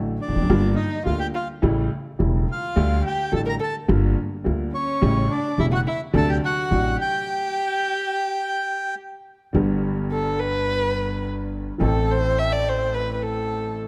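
A sultry, melancholic tango excerpt with a rubato feel, in which a slightly detuned, boxy upright piano and a growly pizzicato upright bass carry the accompaniment under a reedy, smooth bandoneon melody and an expressive bowed violin line rich with vibrato and portamento, captured by close, detailed microphones in light reverb, until a stop at 7.3 s gives way to a violin solo from 9.5 s.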